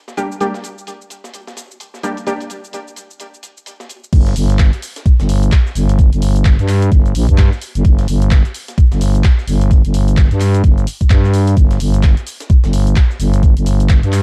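Bass house with a gritty, bouncy swing and a dark production, cut from a longer piece. It opens on a bold, bright orchestra-hit-like synth stab with reverb and delay over a big-room dance drum kit of cabasa, crash cymbal, handclaps and hi-hat, while a compressed, sampler-style breakbeat kit of overdriven hi-hat and snare sits in the background, re-recorded in a small room. At 4.1 seconds the drop arrives as a knocking, tape-warm electronic kick and a thick, growling FM bass with tube saturation and sidechain pumping push up front.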